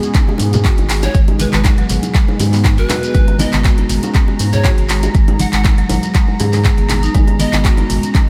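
A deep, up-front electronic kick drives this 120 BPM afro house groove with a light 16th-note swing, layered with a deep house kit of handclaps and hi-hat, very quiet low-tuned congas, tight high-tuned bongos and a grainy, saturated shekere tucked into the background. Underneath, a round, dark analog bass and a smooth, detuned sawtooth pad with chorus both pump against the kick, while a close-miked marimba plays dry, full arpeggios trailed by a diffuse ambient delay. From 1.0 s a breathy, bright bamboo pan flute with vibrato and reedy chiff carries the melody over a steady G# minor chord, giving this earthy, driving excerpt from a longer piece a light reverb and a faint mains hum.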